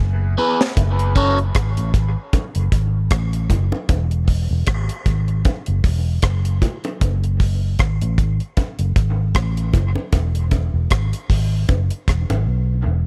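A small room ambience frames this deep, hypnotic dub reggae excerpt at 77 BPM in F# minor, where a dark, foam-muted vintage fingered electric bass sits up front beside a dry acoustic kit of tight kick, high-tuned snare, rim click and hi-hat that opens on a fill, while a slightly broken-up, picked electric guitar flashes through phaser and dub echo only from 0.4 to 1.4 seconds, and low-tuned bongos, thinned by a high-pass filter and carried on dub echo, sit quietly behind until drums and bongos drop out at 12.5 seconds, all over a swinging E to F# minor sway.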